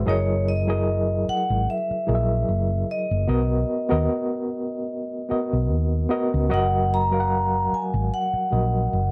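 A ringing, metallic vibraphone carries the melody from 0.1 seconds, struck with medium hard mallets and its motor switched off, with a slapback echo and a boxy small-room character around it. This brief cut from a longer piece is lush 1970s-style soul, romantic and smooth, moving in 4/4 with a lightly swung sixteenth-note feel. Beneath it, an overdriven reed electric piano plays the accompaniment through a combo amp, reedy and gritty with a fast tremolo, sitting up front. A hollow-body short-scale electric bass, played with the fingers, adds a dark, round and punchy low end, amped and also close in the mix. The harmony moves from F#13 to Bmaj7 at 3.3 seconds and settles on F#6 at 6.5 seconds. The whole recording is dry and close, with little reverb, in the manner of a 1970s studio.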